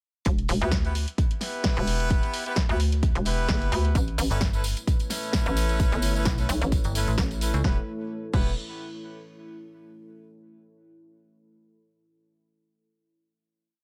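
A four-on-the-floor electronic kick drives this bouncy, swaggering bass house piece at 130 BPM, with a 55% swing on the sixteenths giving the groove its strut. The punchy kick sits up front alongside a programmed house kit of bright hats, a punchy backbeat snare and a crash, while a very quiet acoustic jazz breakbeat loop, dark and smooth, and a jingly hand-played tambourine add background texture. A hollow, knocking FM bass carries chopped, overdriven phrases in E dorian, and at 4.3 seconds a metallic, digital FM bass joins in answering it, both pumping against the kick. Above them, a bright horn section fires syncopated, rootless chord stabs with light vibrato and tape echo as the harmony moves from Em to Aadd9. A deep, moody sawtooth pad with chorus and reverb swells in under the drop at 4.7 seconds, and the piece settles on a final Em chord at 7.6 seconds in a small, roomy space.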